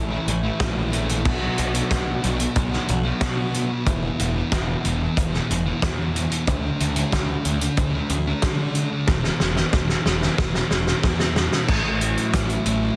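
A loose indie drum kit with a punchy, softly clipped kick, fat snare and dark cymbals sits up front in a straight 4/4 at 92 BPM, driving this wistful, dreamy shoegaze and dream pop excerpt cut from a longer piece, with a drum fill from 9.1 to 11.7 seconds. A dark, thick fuzz guitar riff with subtle chorus and an overdriven fuzz picked bass carry the chords from A through Bm7, Esus4, Dadd9 and E7sus4, while a slightly broken-up electric guitar through a small old amp plays its own riff in the background, washed in reverse reverb. The studio reverb and dense, heavily limited modern master give the whole a hazy weight before it turns to A6 at 11.7 seconds.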